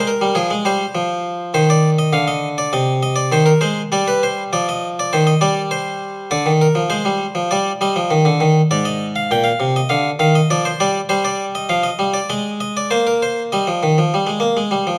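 A bright, plucked harpsichord on a single set of strings plays alone and up front throughout this solemn yet driving baroque-style two-part invention in steady 4/4, its mid-forward voice spanning Ab2 to G5. The harmony leans on minor chords in the opening phrase, then turns at 6.3 seconds into a second section that moves through Bb/D, Eb and Ab before closing on an Eb chord at 13.5 seconds. Close, detailed miking captures the instrument within a moderate recital-hall reverb, in this passage cut from a longer piece.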